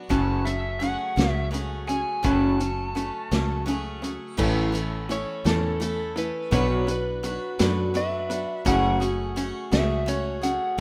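The electric slide guitar stands out most, entering at 5.1 s with a slightly broken-up, compressed tone played with fingerpicks and carrying a solo through the later part of this short cut from a longer folk rock and heartland rock piece in a straight 6/8. Before it, a biting, overdriven lead guitar states a brief high melody in the opening seconds, over a twangy, lo-fi electric guitar riff through a small old amp with analog chorus. A bright, boxy acoustic guitar with fresh strings and audible finger squeak picks a swing-style accompaniment throughout. A round, foam-muted fingered bass sits up front beside a vintage drum kit with dark cymbals, a punchy kick and a rolled-off top, while a mellow baby grand piano with audible action noise joins very quietly at 4.4 s as the harmony moves from F#madd9 through A and Bm. The mood is nostalgic, with light studio reverb and the rough feel of a home demo mix.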